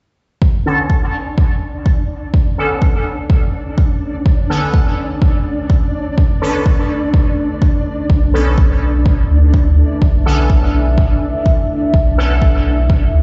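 Heard through a big sound system in a bare stone room, with light digital ambience and a muffled top end, this nocturnal, deep dub techno excerpt rides on a swung sixteenth-note feel over a single Bm9 chord. An overdriven, up-front electronic kick starts things at 0.4 s, joined by resonant, juicy sawtooth polysynth stabs with filter sweeps, phaser and dub echo, a grainy, flickering granular texture, and a moody, mellow pad of detuned unison chords with 12-bit sampler grit. The pad, stabs, texture and bass all pump against the kick, and a clean, smooth sine sub bass arrives up front at 8.1 s.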